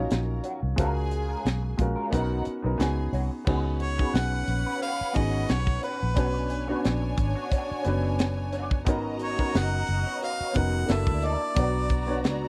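Smooth and romantic, this lush 1970s-style soul piece moves at 89 BPM with a gentle sixteenth-note swing. A tight funk drum kit with a high-tuned snare sits up front beside a dark, foam-muted fingered electric bass, while a baby grand piano with audible action noise, a rich bowed string section and a slightly broken-up electric guitar riff through wah fill out the dry, close studio sound. A clear harmonica with light vibrato enters at 3.8 seconds to carry the melody over chords such as Bmadd9, G#m11 and F#7alt.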